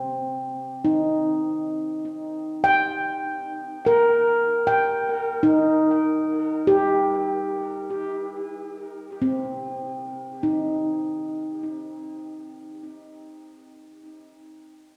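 In free time, this spacious, reflective ambient fragment, tuned to A4 = 441 Hz, features a solo handpan played up front with the fingertips, its ringing, airy stainless-steel tones spanning C4 to G5 through tape echo and a wet concert-hall reverb, all carrying a cassette-tape character, as the harmony moves from Cm7 to Cm at 7.5 seconds before the handpan falls silent at 14.1 seconds.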